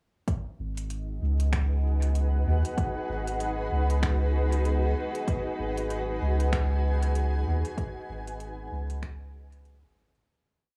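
The recording has an echo-heavy mix with a small room ambience and little reverb, giving this short ambient dub piece a close, meditative yet spacious feel. It moves at 96 BPM in 4/4 with a 59% swing on the 16ths, sits in G# minor on a G#m7 chord, and is tuned to A4 = 444 Hz. The groove starts at 0.3 seconds with a soft, slow electronic kick, deep, overdriven and layered, re-recorded in a large room and placed up front, alongside a sparse electronic kit of crisp closed hi-hats and finger snaps that carries a tape-warm tone and a dub echo. A round, soft sub bass built from triangle and square waves plays an up-front dub-style line in the low register. From 1.1 seconds a bright granular cloud pad of detuned sine and sawtooth voices in unison holds slowly shifting, blurred chords with its own reverb. The whole piece fades out from 6.9 seconds to its end at 10.3 seconds.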